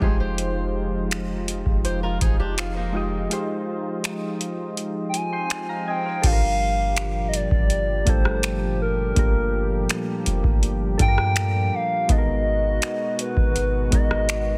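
Moody and late-night, this contemporary R&B excerpt moves in a straight 4/4 over a booming analog drum machine, whose deep kick, metallic hats, finger snaps, rim click and crash sit up front, with a softly clipped snare. A deep, sine-based 808-style bass anchors the low end with a boomy, mellow tone. Soft, round electric-piano-like synth keys with a gentle, warbling vintage chorus supply the accompaniment over a smooth, detuned sawtooth pad that holds sustained chords. A dark, boxy fingerpicked acoustic guitar plays swing-style arpeggios through tape echo before dropping out at 3.8 seconds, during a break. At 5.1 seconds a hollow, woody clarinet-like synth lead takes the melody up front, with vibrato, chorus and tape echo, as the harmony moves from Fm9 to Gm9 at 6.2 seconds and on to Abm9. The sound is dry, dense and heavily limited in a modern way.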